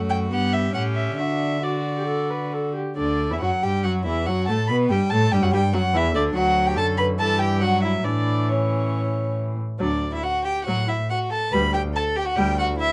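A lively, graceful classical-period movement for string quartet, played with a rubato feel by four bowed, period-style players whose gut strings lend a reedy edge. The up-front first violin carries the melody above a close, rich second violin line, while a smooth-topped viola fills out the accompaniment and an up-front cello holds the bass, with the harmony settling on D at 1.2 seconds and again at 9.8 seconds. The production is dark, with light reverb, and this passage is cut from a longer piece.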